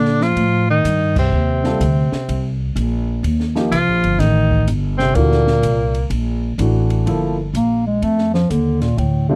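A scooped, lightly vibrato tenor saxophone carries the melody of this searching, intense modal jazz excerpt at a swinging 126 BPM, joined by a breathy bass clarinet second line, a woody, thumpy pizzicato upright bass, and an open drum kit with a high-tuned snare and boomy kick; a grand piano with audible action noise enters at 1.6 seconds, the saxophone stops at 6.1 seconds, and the bass clarinet takes a solo from 7.1 seconds, all in a dry, close 1970s-style studio sound.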